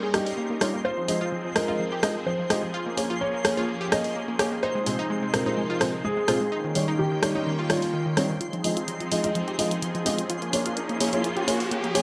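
Expansive and dreamy, this progressive house excerpt in F minor at 127 BPM layers a dark, mellow concert grand melody with delay, a gritty detuned supersaw swell, a round chorused analog pluck arpeggio, sparkling granular shimmer in the background, boxy baby grand stabs and an up-front layered pop drum kit of hi-hat and rim click in a lush hall, until a build-up at 8.4 seconds sweeps filters across the pluck and piano and a background riser enters at 9.8 seconds.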